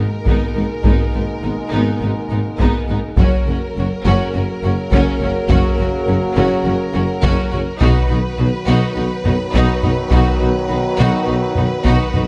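Heavy-stick, saturated taiko drums drive this heroic, relentless cinematic orchestral cue at 104 BPM, entering at 0.3 seconds beneath lush, vibrato-rich violins carrying the melody and a second line, expressive violas with portamento, background French horns and roomy trombones holding sustained chords, and a low foundation of woody cellos, distant double basses and mellow tuba, all moving from G#madd9 through F# to B under light reverb in this brief 12.3-second excerpt.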